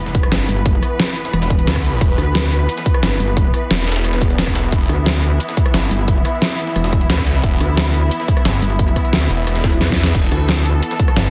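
Dark technical drum and bass with a futuristic edge, where a punchy overdriven electronic kick and an up-front dubstep kit with a deep snare and metallic hats sit over a very quiet, gritty breakbeat sampler-style kit, as a swirling, detuned saw bass with phaser and a wobbling, aggressive FM bass with chorus churn beneath veiled, muted strings holding sustained chords with sampler grit and sidechain pumping, framed by a faint impact at the start and a swell with a drum fill near 9.7 seconds in a dense, heavily limited mix with light reverb.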